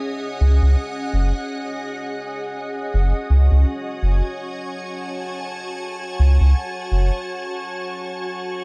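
A swung 4/4 pulse at 83 BPM underpins this hazy, deep ambient dub fragment in F# dorian, tuned to A4 = 437 Hz, with a break from 1.5 to 2.9 s before the harmony settles from C#5 onto F#m. A soft, organ-like pad with a pure, detuned, evolving tone holds sustained chords throughout, bright under its ensemble chorus and built-in reverb. A round analog bass enters at 0.4 s, dark and up front with a filter sweep, and stops at 7.1 s, all within a light, digital ambience.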